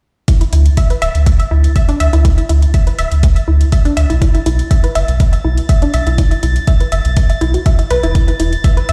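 Heard dry, as if blasted through a big sound system in a bare stone room, this short progressive house cut at 122 BPM feels bittersweet and emotional. A deep, up-front electronic kick and metallic, tape-tinged hi-hats drive it, while a round, dark analog bass with tube saturation and a lush, punchy detuned unison pluck playing tape-echoed arpeggios both pump against the kick and carry filter sweeps. From 0.7 seconds a calm, glassy texture of drifting overtones sits in the background with chorus and its own reverb as the harmony moves from D5 to B7(no3) at 4.2 seconds.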